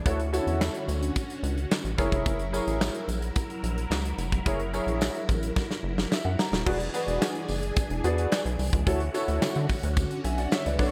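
Early-eighties boogie funk with a danceable, late-night mood, this dreamy, reverb-soaked excerpt sets a clear grand piano with analog chorus and a rubbery, nasal square-wave bass up front beside a tight, bright-cymballed studio drum kit with handclaps, while a swirling phased string machine holds sustained chords beneath, a very quiet jingly tambourine joins in, and drum and piano fills around 5.6 seconds lead into a new section at 6.7 seconds as the harmony moves from Dmaj7 and F#7 to E7.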